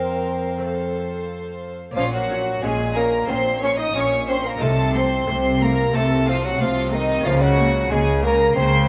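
Set in a concert hall with moderate reverb, this stormy, driving baroque-style concerto passage is cut from a longer piece and opens on a suspended chord that settles before turning to minor. A warm solo bassoon with light vibrato carries the melody alongside a smooth, distant high violin section, while a focused second violin line, a rich, recessed viola section and an even cello bass fill the string body, and a delicate fingerpicked gut-string lute sits very quietly underneath. At 2.0 s a close, expressive double bass section joins the cellos on the bass line.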